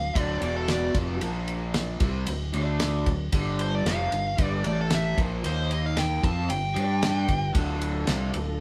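A nasal, overdriven lead guitar with a parked wah carries a dark, up-front solo melody over a swaggering, brooding classic rock groove in D minor at 114 BPM, backed by two raw overdriven garage guitars, one bright with a phaser and the other lo-fi, playing the riff. A punchy, amped fingered bass and a damped 70s kit with a fat snare, tight kick and dark ride cymbal sit up front in a live-room sound with moderate reverb. Near the end of this short cut from a longer piece, a very quiet tonewheel organ with slow rotary speaker and key click enters at 7.2 seconds, and a picked steel-string acoustic guitar joins at 7.5 seconds in the background as the lead drops out.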